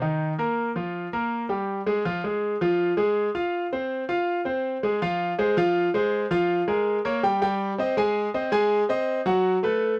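A bright concert grand piano opens this fiery, danceable Latin piece on its own, playing in F minor at 162 BPM in a straight 4/4. The piano carries everything as a solo part across the whole 9.9 seconds, ranging from Eb3 up to Ab5, with a brilliant, polished tone, a deep bass and an up-front presence. The first section moves quickly through a rootless Cm7, Fsus4, Gm and Fm. A second section begins at 5.0 seconds and turns toward Bbm7, Eb and Ab before landing on a B5 chord near the close. A light reverb surrounds the instrument, and the passage is cut from a longer performance.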